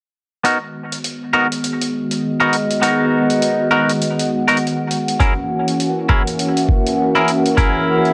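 Cassette home recording bathed in a moderate spring reverb, this funky, playful glitch hop excerpt swings along in 4/4 over G#m7 moving to F#7. Bright, clean stabs from an up-front semi-hollow electric guitar pump against the sidechain through a low-pass filter and analog delay, while a gritty, pitched-down hi-hat ticks underneath, and a smooth, detuned sawtooth analog pad with chorus and tremolo sits beside a dark, nostalgic, warbling tape-like pad. A thumpy, compressed kick drum arrives up front at 5.2 s and drops out at 7.7 s.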